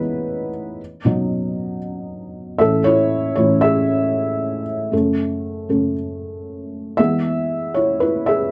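A felt-muted upright piano plays alone from the first moment, its muffled, intimate tone sitting up front with the soft clicks of its action clearly audible. This short pop excerpt moves at 116 BPM in a straight 4/4, in E major, and carries a hopeful, uplifting mood. The harmony passes from E to B, then A and F#m, before returning to E at 7.0 s, where a brief new passage begins and runs to the end at 8.5 s. The thick felt gives each note a short, mellow sustain across a range from F#2 up to E5. A moderate studio reverb surrounds the instrument, and the production has a dark, cozy character.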